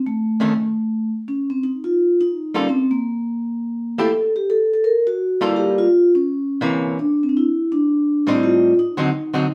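Playful and relaxed, this short jazz excerpt swings at a brisk pace in 4/4, cut from a longer piece. A vibraphone played with soft mallets carries the melody from 0.1 seconds, its tone metallic and ringing yet mellow, with the motor off so the bars sound plainly, placed up front in the mix. Just after, at 0.4 seconds, a miked and amplified archtop guitar enters as accompaniment, its clean, picked hollow-body sound dark and electric, also sitting up front. The harmony moves through colorful extended chords such as F7b13, Gm9 and C7b9, with brief breaks where the chords drop out before settling on Am7b5 near the close. The pair plays live together in one room, wrapped in a wet studio reverb that gives the sound a sense of space.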